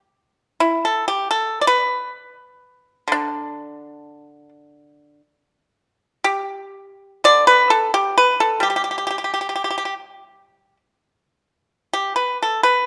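Loose, rubato timing over a nominal 4/4 at 85 BPM gives this flowing, pastoral fragment of Chinese traditional music a freely breathing pulse, as a solo pipa enters at 0.6 seconds in the G gong mode and plays, up front and bright with a dry, percussive fingerpicked attack, across a span from D3 to D5, set in the moderate reverb of a recital hall within this short excerpt cut from a longer piece.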